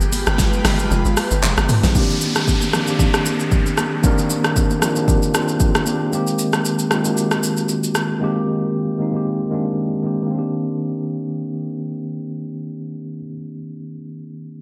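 This late-night, deep amapiano excerpt in C minor at 115 BPM, with a swung 16th feel, opens on a drop over G7b9. An airy, breathy pad, a tight, punchy log drum bass and an up-front deep house kit (deep kick, fat snare, handclaps, rim click, shaker, hi-hat and toms, all with gated reverb) play together, with the kick muted from 0.9 s. From 1.9 s, after the pad and bass stop, a mellow tine electric piano carries Cm9 and then Abmaj9 through a low-pass filter, while bright, high-tuned congas stay very quiet and an electronic downlifter passes through. The drums run until 8.1 s, leaving the piano in a lush hall reverb with a bright 1980s-style digital sheen.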